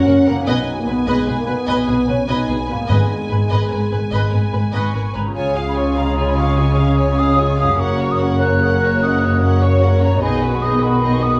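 Heroic adventure film scoring in a rolling 12/8 with a determined, swashbuckling mood, cut from a longer piece. Lush bowed violins carry the smooth, vibrato-laden melody over a second violin line, focused violas, a woody, distant cello section and a rich double bass section, while a French horn section holds sustained chords and a very quiet concert harp rings out fingerpicked arpeggios. Round, soft-mallet timpani sound briefly from 2.9 seconds under a G#madd9 chord. From 4.7 seconds a pure, hollow flute adds a tongued line up high, soon joined by a dark cor anglais, a mellow, roomy clarinet and a clear, vintage-toned trombone section holding chords of its own. The harmony moves through B6, G#madd9, C#, F# and back to B6, all set in a recital-hall reverb that gives the ensemble a spacious, cinematic sheen.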